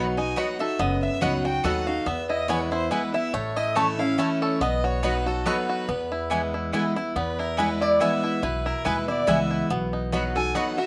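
A swung three-beat lilt drives this lively bluegrass excerpt, with the fiddle and resonator guitar entering a moment after the rest of the band and the melody shared by a twangy, percussive fingerpicked banjo and an intense, bright bowed fiddle with light vibrato. An up-front, full-bodied jumbo steel-string guitar supplies picked accompaniment while a woody double-strung mandolin adds stabs and a thumpy, dark gut-string upright bass plucks the low end. A metallic, nasal slide resonator guitar sits in the background on a second line with slapback echo, all captured dry outdoors.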